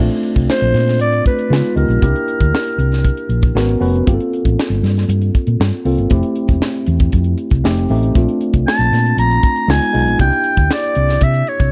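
Polished 1980s jazz-funk pop with an urban, glossy mood, cut from a longer piece and set in a straight 4/4 groove. A tight funk drum kit with a high-tuned snare and a dark, round hollow-body electric bass anchor the track, while a worn, slightly out-of-tune tine electric piano, lightly overdriven with subtle chorus, comps through chords such as Bbmaj7, Db9 and C7. A raspy, growling clarinet with light vibrato carries the jazz-style solo melody from 0.5 to 3.8 seconds and returns at 8.7 seconds, all captured in a dry, close 1970s-style studio sound with every part up front.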